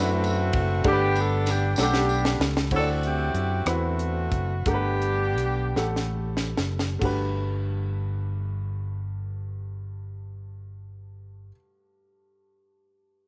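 A warm, tight saxophone section carries the melody up front with a jazz-style vibrato, singing over the opening 6.2 seconds of this soulful, reverent slow gospel passage in a straight 6/8, cut from a longer piece. A clear upright piano with a woody, vintage tone and short sustain accompanies throughout, moving between D9 and Gmaj9 chords and lasting longest of all the parts, until 13.3 seconds. Beneath it, a round, dark, amped electric bass sits up front and plays until 11.5 seconds. A dry acoustic funk kit with bright cymbals, a high-tuned snare and a tight kick keeps time, playing fills at 1.8 and 5.8 seconds before dropping out, while a jingly tambourine, heard distantly as if in a large room, joins only briefly at the start. The music slows down across its middle stretch, and a light studio reverb gives the ensemble a gentle sense of space.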